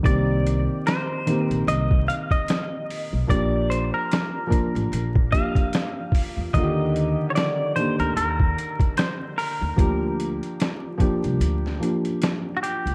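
Light reverb and a layer of vinyl crackle frame this mellow, dreamy lo-fi hip hop excerpt in Bb major, swung at 74 BPM in 4/4 as the chords move from Cm7 through Bb6 and Ebmaj7 to Gm7. A gritty, pitched-down boom bap drum kit with a thumpy kick and medium-tuned snare sits up front beside a soft, dark felt-muted upright piano carrying cassette-tape character, while a woody pizzicato upright bass anchors the low end. From 0.1 seconds a clean, hollow-bodied semi-hollow electric guitar carries the fingered melody through spring reverb, and the kick drops out at 11.4 seconds.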